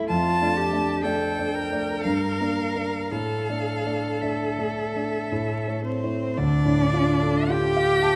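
A dark, mellow concert grand and a rich, focused cello open this solemn, yearning slow movement for piano trio in 3/4, with the piano's deep bass sitting up front beneath the cello's bowed second line. A clear violin enters at 0.1 seconds with a smooth, even melody sung with vibrato. The rubato phrasing moves through Dm/F, Gm7 and Asus4 to A before landing on Dm as a new section begins at 6.4 seconds, all set in moderate recital hall reverb with vinyl crackle lending a vintage, romantic glow.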